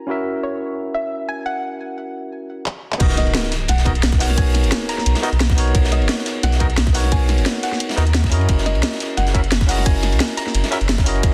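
A dreamy, lush liquid drum and bass passage opens on a soft, round pluck melody with subtle chorus and delay over a barky tine electric piano through digital delay, as a filter sweep runs beneath them. A drum fill at 2.7 seconds leads into the drop at 3.0 seconds, where a deep, full sub bass with octave and tube saturation sits up front beside a tight electronic kick, a layered kit with a cracking snare and handclaps, a gritty breakbeat kit with dark cymbals, and an impact in the background. The harmony moves from F#7 to Bmaj7 and back to F#7 inside a dense, heavily limited master with light reverb.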